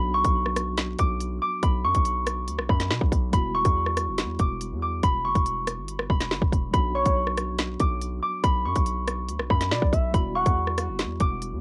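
A fingerpicked, ringing concert harp melody, colored by cassette tape and analog delay, opens this ominous, cold drill excerpt over a mellow tine electric piano and a punchy, heavy 808-style bass, moving between B minor and E minor add9 at 141 BPM with a half-time feel. At 0.2 seconds an up-front electronic drum kit enters with a hard-clipped kick, woody snare, crisp hi-hats and rim clicks, also run through cassette tape. A smooth, detuned gliding lead with chorus, vibrato and analog delay briefly adds a second line at 6.9 and 9.7 seconds, all within a dry home cassette recording.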